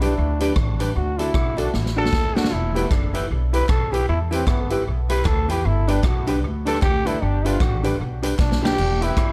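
Ska at 153 BPM in E minor with a swung 4/4 feel, this energetic, mischievous passage, cut from a longer piece, is led by a raspy, growling trombone solo with vibrato, plate reverb and dub echo. It rides over a pizzicato upright bass with gut-string thump and a big-band drum kit with a punchy kick, plus crash, hi-hat, rim click and snare, with drum fills at 1.7 and 8.4 seconds. In the background, a clean, hollow-body archtop guitar carries dub echo while a worn, slightly detuned upright piano adds stabs, and a very quiet group handclap joins at 2.9 seconds. Chords move from G and D to E minor, with light reverb on the mix.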